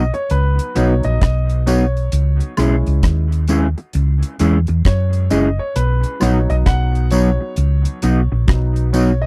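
A dry, close 1970s-style studio sound frames this sunny, uplifting roots reggae excerpt in B major at 66 BPM with a swung sixteenth feel, where a warm concert grand piano takes the solo role with natural, deep-bass stabs over B, C#m and back to B, backed by a dark, clean, fingered electric guitar with lush chorus and dub echo, a round, punchy hollow-body short-scale bass, a deep reggae kit of tight kick, hi-hat and rim click, and faint tambourine and woodblock entering at 0.8 seconds.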